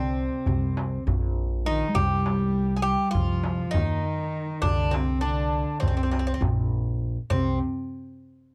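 Turkish makam ensemble music in makam nihavent on C, melancholic and soulful, moving at 202 BPM in eighths within a straight 9/8 metre, cut from a longer piece. A metallic, double-strung bouzouki picks the melody up front, while a bowed cello with an airy, nasal bite and light vibrato carries a second line beneath it, and a woody pizzicato upright bass on steel strings anchors the bottom. A deep, crisp metal-shell darbuka played with soft hands joins at 0.5 seconds, its sound compressed and saturated, all captured in a dry, close 1970s-style studio recording.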